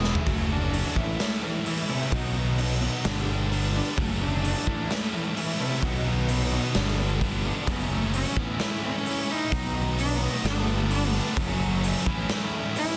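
A half-time 4/4 pulse at 130 BPM, launched by a drum fill, drives this restless, bittersweet quiet-loud alternative rock excerpt, where a gritty, up-front garage drum kit in a pumping stone room and a growly, punchy fuzz bass underpin a bright overdriven guitar riff over F#m, A, B and G chords, while a rich, smooth bowed cello solo with vibrato and tape echo sings throughout, a lo-fi small-amp guitar plays chorused arpeggios in the background until 7.7 seconds, and a phased, cranked stack guitar rejoins in the background from that point, all set in light reverb and a dense, heavily limited master.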